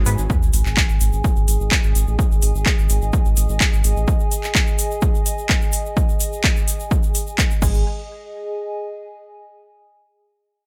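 Melodic techno with a melancholic yet driving pulse, this short cut from a longer piece rides a punchy, overdriven electronic kick and a house drum kit of handclaps, crash and metallic hi-hats, both up front with a large-room sheen, while a grainy egg shaker sits in the background and a very quiet sub drop marks the impact at 0.3 seconds. A round, deep analog bass pumps against the kick, a tight sequenced synth flickers briefly through chorus, phaser and digital delay, and a warbling, nostalgic tape-like pad with lo-fi vintage character and built-in reverb carries on after the drums stop near 7.7 seconds, outlasting the last touches of bass, synth and shaker and closing the passage at 9.7 seconds.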